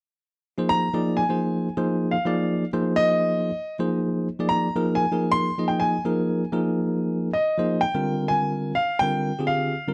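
Swinging lightly on the sixteenths at 126 BPM in 4/4, this funky, slick jazz fragment in F dorian pairs a bell-like, bright tine electric piano accompanying on Fm7 with a clear, intimate grand piano carrying the high melody up front, its action noise audible, all set in a dry, close 1970s-style studio with light reverb before the harmony moves to Fm69 at 7.8 seconds.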